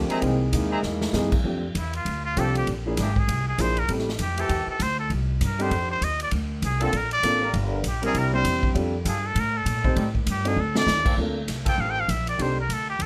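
Big band swing jazz in F major at a brisk 198 BPM, joyful and brassy, opening with a bright trombone section and a tight trumpet stab over warm upright piano, woody pizzicato upright bass and a swinging drum kit with dark cymbals and a punchy kick. From 1.8 seconds a nasal trumpet with straight mute takes the melody up front, with vibrato and scooped notes, while a clear trombone section holds sustained chords behind it and drum fills mark the turns. The sound is close and detailed with light reverb, in a short cut from a longer piece.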